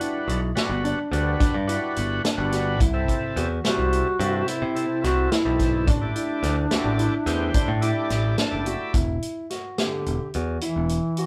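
Recorded as a band playing live in one room with moderate studio ambience, this bright, driving progressive instrumental excerpt moves at 215 BPM in 11/8 with a straight feel, tuned to A4 = 439 Hz. A mellow, folk-style duduk carries the melody with vibrato and scooped notes over a vintage drum kit with a punchy kick and medium-tuned snare, a growly, up-front picked electric bass that enters at 0.3 s, and polished, short-sustain grand piano arpeggios. A gritty, overdriven tonewheel organ with a slow rotary speaker fills out the accompaniment and plays a fill just before it stops at 8.9 s, as the chords move from Gmaj7, C6 and A7sus4 to Em7.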